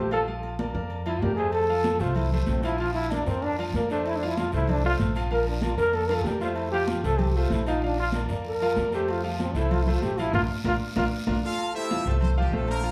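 A straight 4/4 salsa groove at 191 BPM in F major, driven by high-tuned congas, ringing agogo bells and timbales in the background and a raspy, dry guiro, carries a joyful, sunny mood as a woody, growly pizzicato upright bass and a bright concert grand piano back an up-front vintage trombone solo with plate reverb, punctuated by drum fills and a band accent, until a brilliant, octave-doubled horn section with light vibrato takes the melody at 11.4 seconds over an Fmaj7 chord, heard from further back in a large studio room.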